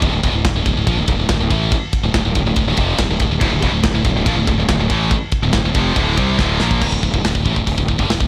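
A bright, picked, high-gain guitar riff sits up front from the first moment, driving this aggressive, epic heavy metal fragment cut from a longer piece. Beneath it, a dark, round fuzz bass played with the fingers adds punchy, overdriven weight, while a tight acoustic metal kit with a mid-forward studio-room tone works across kick, snare, hi-hat, ride and crash, its medium-tuned snare carrying a touch of soft clipping. At 3.4 seconds a second distorted, high-gain guitar joins the riff, thickening the attack. A drum fill at 6.4 seconds leads into a new section at 6.8 seconds, where the harmony shifts from a minor chord to a bare power chord and the second guitar drops out. The whole recording sounds blown-out and overdriven, adding to its relentless, straight-ahead force.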